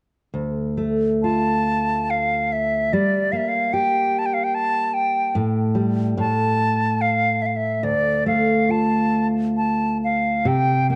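Celtic folk slow air in D minor and 3/4, moving at a rubato 68-74 BPM with a longing, haunting mood, taken from a longer piece. A fingerpicked steel-string acoustic guitar with a full-bodied dreadnought tone opens at 0.3 s, up front in the mix, and carries the accompaniment through Dm, Gm and Gsus2/A, a brief chordless passage and a return to Dm. From 1.2 s a close-miked, reedy wooden flute sings the melody with airy brightness, tongued notes and vibrato. A moderate church reverb adds space to a dark production.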